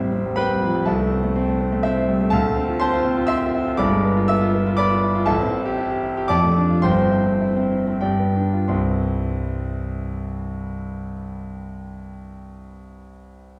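A warm concert grand piano with deep bass and an open tone plays alone in this sparkling, brilliant classical virtuoso study in C major, in 3/4 with a rubato feel at 88-124 BPM and tuned to A4 = 436 Hz, ranging from G1 to E6, slowing from 4.5 to 8.7 seconds before resolving to C as a new section begins, all cut from a longer piece and heard from further back in a wet recital hall reverb with a 1.6-second decay.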